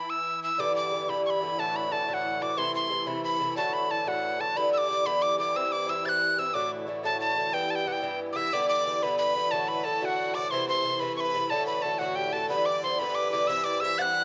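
Captured with close, detailed microphones in a moderate recital hall, this wild, spirited Celtic folk fragment in 6/8 sets a breathy, chiffy metal tin whistle melody up front over a shimmering, reedy musette accordion drone and the metallic double strings of a picked Irish bouzouki, and a single earthy, airy-bowed fiddle adds a second line at 8.4 seconds.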